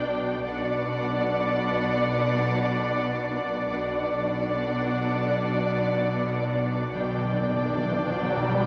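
The muted studio violin section stands out, sitting up front with a veiled, smooth-topped tone and light vibrato as it holds a second line on D5 in this brief, uneasy fragment of a suspense film score cut from a longer piece. Around it, muted chamber strings play con sordino: distant violins carry the melody between F#5 and G5, a soft-attacked viola section supplies accompaniment in the background, and the cellos, also up front, share the bass with a subdued double bass section on a B minor chord. Beneath them, a tense, string-like drone with a sawtooth edge, a noise layer and ring modulation sustains low in the background, carrying its own built-in reverb. Timpani struck with medium mallets enter at 6.9 seconds with a fill from a small room, and an electronic riser joins at 7.7 seconds, both sitting back in the mix. The whole is bathed in a wet scoring-stage reverb that lends the dark, ominous mood a lingering depth.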